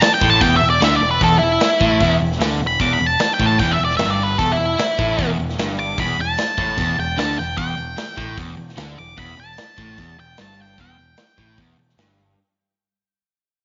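A straight 4/4 groove at 150 BPM drives this heavy, gritty blues rock power-trio fragment with a southern rock edge, sitting on a single E minor chord. The big acoustic drum kit's punchy kick, medium-tuned snare and hi-hat anchor a growling, bright, overdriven picked bass and a crunchy, double-tracked rhythm guitar riff up front, while a dark octave-fuzz lead guitar carries the melody high above. A moderate echo-chamber reverb and a rolled-off top end give the sound a dusky studio glow as the whole passage fades out over its 12.4 seconds.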